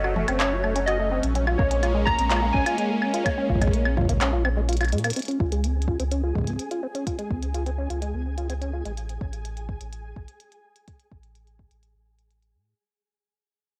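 This wistful, playful IDM piece opens with warbling, lo-fi synth keys carrying a nostalgic melody over a swirling, detuned pad treated with phaser and chorus. Beneath them, a rubbery, resonant acid bass runs arpeggios through analog delay, a round sine sub bass sits up front, and a glitchy kit of claves, handclaps, clicky hi-hat and toms clatters along. A soft electronic kick joins at 1.6 seconds, anchoring the straight 4/4 pulse at 126 BPM as the harmony moves from Gbm to Bbm7. After a drum fill, the chords shift to Dbmaj7 and a long fade-out begins at 5.2 seconds; the keys and pad have dropped away, and a faint, flickering granular texture drifts in with its own reverb. The acid bass stops near 8.9 seconds, leaving sub bass, drums and texture to carry the final chordless stretch, all heard through a dry, gritty hardware sound with transformer saturation and cassette-tape coloring.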